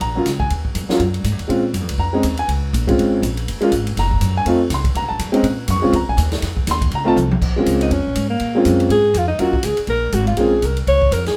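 Small-group swing and bop jazz with a smoky, moody feel, where a woody, vintage upright piano with long sustain and a thumpy, gut-strung pizzicato upright bass ride over a natural-sounding drum kit with a punchy kick, and a drum fill at 7.2 seconds sets up a clear, close-miked alto saxophone solo with vibrato that enters at 7.8 seconds, all in a small, moderately reverberant room.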